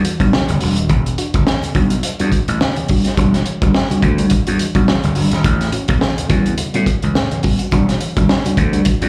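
A mellow tine electric piano plays stabs over a growly, overdriven slap bass and a crunchy breakbeat kit with a high-tuned snare and tight kick, setting up a hypnotic, sly funk groove at 106 BPM in E dorian with a swung 16th feel. The clean piano sits in plate reverb with slapback echo as the harmony moves from Em7 to A13 at 5.4 seconds and back to Em7, while very quiet, low-tuned congas with a thick-skinned tone play from 0.3 to 8.7 seconds. This short excerpt sounds like a live gig heard through the venue's PA, with light club reverb around the saturated, rolled-off drums and the bright, punchy bass up front.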